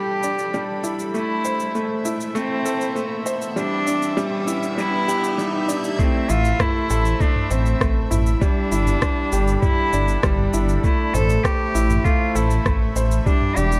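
Hypnotic and moving, this piano and strings electronica excerpt in A minor at 99 BPM sets a reedy, up-front cello melody and a woody, bright upright piano riff, both with tape echo, over distant, floating chamber strings under a filter sweep, a background riser and a minimal click kit of rim click, shaker and toms, building until the drop at 6.0 seconds brings in a muffled, thumpy electronic kick and a rumbling detuned saw bass with sidechain pumping.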